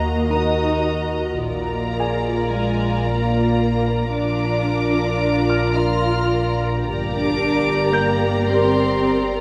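Cinematic and tense, this eerie excerpt from a longer piece moves at 110 BPM in 5/4 with a straight feel, passing from Eb minor to Bb and then to G minor at 6.9 seconds. Highest in register among the strings, a rich violin section carries the melody with a pure, floating sul tasto tone that sounds distant, while a second, darker violin section adds a woody, vibrato-laden line beneath it. A dark viola section sits in the background with lush, close accompaniment, and a smooth, intimate cello section joins a soft-attacked double bass section to anchor the bass, all bowed gently over the fingerboard. Supporting the strings, a very quiet French horn section holds vintage, classical-style chords, a glassy, ethereal FM pad with slow attack and chorus sustains mellow harmony, and a calm, detuned organ-like drone hums low in unison. A clear grand piano adds a present but very quiet texture across the upper register, and the whole ensemble is placed in a wet scoring stage reverb.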